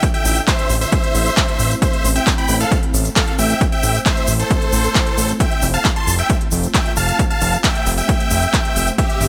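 A huge, euphoric supersaw lead carries the melody from G4 to C6 with digital delay and sidechain pumping over a punchy, overdriven kick, crisp-hatted handclap kit, fat detuned analog bass entering at 0.2 s, a grainy egg shaker and a shimmering, ethereal pad in the background, moving from Am to F at 5.4 s in this emotional, soaring uplifting trance excerpt at 134 BPM.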